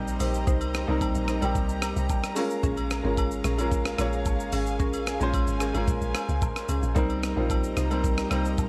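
A deep, round log drum bass with a dark, percussive punch anchors this soulful, hypnotic amapiano excerpt at 111 BPM in C phrygian, sitting up front alongside a clear, worn baby grand piano and a gritty, thumpy sampler-style breakbeat kit of hi-hat, kick, rim click and shaker, while lush bowed strings with vibrato pump under sidechain, a buzzing marimba adds dry stabs through analog delay from 0.2 seconds, and agogo bells and woodblock sit in the background over Cm7 and Bbm7 chords in studio reverb.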